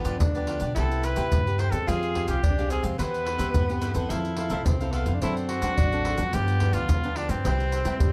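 A breathy tenor saxophone opens this sunny, joyful samba-choro fragment in C major at 108 BPM, its subtone, scooped notes and close-miked vibrato carrying a jazz-style second line over a bright, crisp picked cavaquinho and a fingerpicked classical nylon-string guitar that sit in the background. Beneath them, a woody, thumpy pizzicato upright bass anchors the low end, while egg shaker, a tight surdo and pandeiro ring out with a live-room feel. At 0.8 s a clear, vintage-toned trumpet enters with the jazz-style solo melody, shaded with vibrato. The harmony moves from G7 to Cmaj7, then through Fmadd9, Cmaj7/E, Fmaj7 and D7/F# before turning back through G7 to Cmaj7. Light reverb and a dark, warm production give the short passage a cozy, intimate glow, and it is cut from a longer piece.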